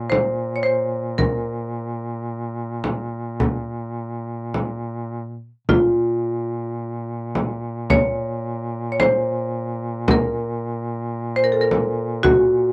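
Caucasian folk lament in Bb minor, solemn and longing at a rubato 55 BPM in 4/4, where an up-front, woody marimba struck with hard mallets carries the melody between F4 and Db5 over a warm, vibrato-tinged duduk drone on Bb2 and a deep, vintage frame drum, all captured in a dry, close 1970s-style studio sound with light reverb, the music shifting to a new section at 5.7 seconds in this short fragment of a longer piece.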